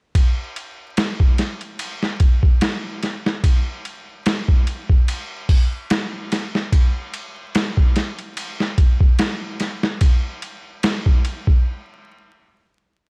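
Brooding and smoky, this trip hop fragment from a longer piece rides a lightly swung 16th-note feel on a sampler-style boom bap kit of hi-hat, thumpy kick, medium-tuned snare and ride cymbal, pitched down, compressed, gritty and up front with a small-room, tape-warm character, all laid over vinyl crackle with little reverb until the drums stop at 11.6 seconds, leaving a pause that runs from 11.7 to 13.1 seconds.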